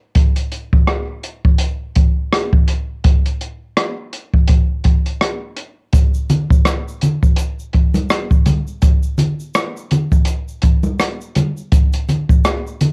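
A dry home recording on cassette, with little reverb, opens this smoky, cool hip hop excerpt at 83 BPM in 4/4, its sixteenths swung at 58%. An open jazz drum kit carries the groove from 0.1 seconds, up front and acoustic, with a dark, smooth character, a boomy kick, a rolled-off top and a small-room feel. Hi-hat, kick drum and rim click make up the kit, and the drums themselves carry a cassette tape colouring. At 5.9 seconds an egg shaker and congas join, bright and acoustic in a live room, sitting up front but lower in level than the kit. Both parts play through to the end at 12.9 seconds, holding a single section.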